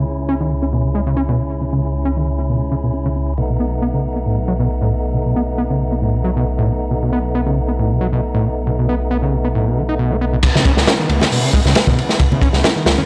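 A squelchy, distorted acid bass riff drives this raw, funky breakbeat excerpt in C# minor at 136 BPM, its resonant filter pluck run through analog delay. Beneath it, a thick, detuned saw bass holds the low end with menacing, tube-saturated weight. A tonewheel organ with audible key click plays sustained chords through a fast rotary speaker, with sidechain pumping and a filter sweep. The harmony moves from C#m7 to B7, then returns to C#m7 when the drop hits at 10.4 seconds. There, a crunchy acoustic drum kit arrives up front with dark cymbals, a tight kick and a rolled-off top, joined by very quiet, bright congas with hard hands and a faint electronic downlifter. The recording has a gritty, cassette-tape character, a light swing on the sixteenths and small-room ambience.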